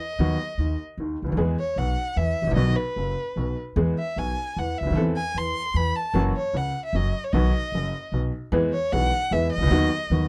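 A bowed solo violin carries this short passage from a longer tango, its warm tone shaped by vibrato and portamento, with a smooth top end and an expressive, up-front presence from a single player. The mood is passionate and melancholic, set in E major in 3/4 at 151 BPM but played with a rubato feel that lets the time breathe. From 0.2 seconds a clear, open upright piano supports the line, alongside a pizzicato upright bass with steel strings and a woody sound. The harmony moves through B/D#, E, Amadd9/E and F#7 before settling back toward E around 8.5 seconds. The recording has a dry, close 1970s-style studio sound with light reverb.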